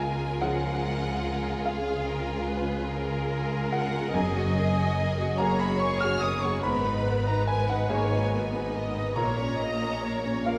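Longing and sorrowful, this cinematic excerpt moves in a slow, rubato 6/8 at 48 BPM, cut from a longer piece and set in a resonant hall with a lingering reverb. A distant, soft-edged violin section carries the high melody over a richer, close second violin line, while a bright, vintage-toned grand piano and a smooth, even viola section supply the accompaniment. Beneath them a focused cello section sits in the background and a double bass section adds expressive portamento, as the harmony passes through C#6, F#add9, G#madd9 and A#m.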